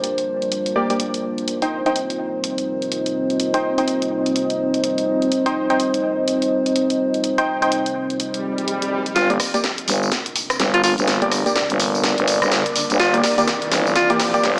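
This bass house cut opens with a house drum kit of hi-hat, rim click, cracking snare and tambourine, its layered electronic hits tape-warm and re-recorded in a large room, set up front over two dark pads: a moody, nasal analog pad of detuned square and sawtooth tones holding sustained chords with chorus, and a deeper, warbling vintage ambient pad sitting in the background with its own built-in reverb. From 0.8 seconds a bright, band-passed chord stab with a nasal, detuned sawtooth pluck cuts through with chorus and tape echo, moving from G minor to C minor at a swaggering, bouncy 125 BPM with a 16th-note swing. An electronic swell and riser begin at 8.4 seconds, leading into a build-up and drum fill from 9.2 seconds, where the harmony returns to G minor. At that point a growling, thick FM bass enters up front on a low G, joined by a clear, punchy alto saxophone solo with vibrato and tape echo in a pop style. 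The whole track carries a moderate lush hall reverb and a small-speaker character, cut from a longer piece.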